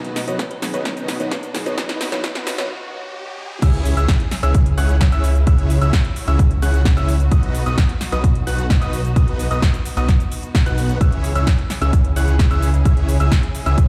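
An overdriven, punchy electronic kick sits up front in this anthemic, euphoric stretch of festival progressive house, cut from a longer piece. A layered big-room dance kit adds snare, metallic hi-hats, shaker and crash, with a drum fill running across most of the opening build-up. Over it a huge, detuned supersaw riff plays through a low-pass filter and tape echo, joined by a soft felt-muted upright piano with audible action noise, a woody kalimba melody and distant chamber strings, while a very quiet riser and impact sit beneath. After a short break the drop lands at 3.6 s, bringing in a thick, chorused saw bass and a brilliant grand piano playing high arpeggios with tape echo in the background. Sidechain pumping runs through the supersaw, strings, both pianos and the bass as the chords alternate between B and C# minor, and the whole mix sounds as if played on a big sound system in a bare room with large studio reverb.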